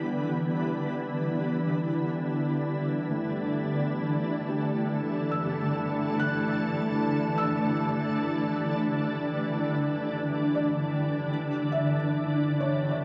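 Reflective and spacious, this free-time ambient piece in E minor rests on an Em7 chord, with a shimmering, detuned pad holding sustained chords up front, a warbling organ-like drone humming alongside, and a soft, felt-muted upright piano fading in with mellow arpeggios through tape echo and shimmer reverb, all within a huge, wet reverberant space.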